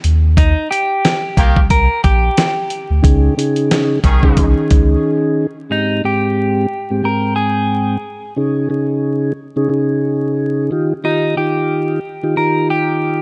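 A swung boom-bap groove opens this nostalgic hip hop passage, carried by a gritty, compressed sampler-style drum kit with a thumpy kick and fat snare up front, over a round, sine-like sub bass. A dark, scooped clean electric guitar picks out the melody from 0.4 s with a subtle chorus. A distant, roomy horn section adds tight jazz-style stabs with light vibrato and a touch of delay. At 3.0 s a soft, flute-like tonewheel organ enters through a slow rotary speaker, and it carries on with the guitar after the drums and bass drop out near 5 s. The harmony moves through Eb, Dbsus2, Abmaj7 and Ebadd9 under light reverb and vinyl crackle that give the mix a warm, dusty sheen.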